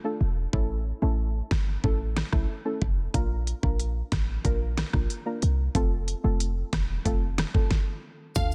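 A deep, nasal chord stab with chorus opens this hypnotic, bouncy dancehall excerpt at 92 BPM, quickly joined by a punchy, tight 808-style bass and an up-front pop drum kit with a knocking kick, fat snare, crisp hats and vintage 12-bit sampler grit, moving through Dm, A, Bb and F before a stop at 7.7 seconds gives way to a glassy wavetable pluck and soft background maracas at 8.4 seconds, all inside a dense, heavily limited modern master.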